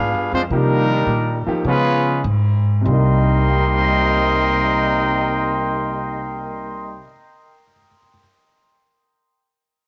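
Swinging jazz in 4/4 with a sultry, dramatic mood, this passage is cut from a longer piece and slows down through its first 2.9 seconds before moving into a new section. A trumpet section carries the melody up front, smooth at the top and touched with tape echo. A bright trombone section with vibrato plays a close-miked second line beneath it. An acoustic upright bass, plucked on steel strings, gives a woody foundation. A concert grand piano enters at 0.5 seconds as background accompaniment, intimate and natural, with audible action noise, deep bass and long sustain. The horns and piano carry a cassette tape coloring, and the ensemble sits in a small room with light reverb, like a home recording on cassette.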